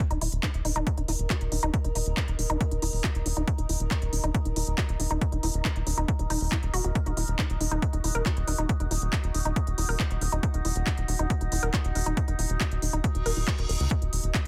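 A woody, wave-folded pluck carries the riff from the first moment in this hypnotic, alien psychedelic trance excerpt, its percussive, ring-modulated tone colored by chorus, tape echo and sidechain pumping over a straight 4/4 at 138 BPM in Eb phrygian. Beneath it, a tight, dark sequencer bass with a fast attack drives the low end alongside a punchy, up-front electronic kick, while a layered techno kit adds handclaps and smooth hi-hats. An overtone-sweeping drone holds sustained chords from 0.4 seconds, resonant and chorused with its own reverb, and pumps under sidechain compression. At 4.6 seconds a very quiet, warbling, lo-fi pad enters high above, lending a nostalgic haze. A reverse cymbal rises at 13.2 seconds, and the whole sits in a digital ambience with a dense, heavily limited modern master.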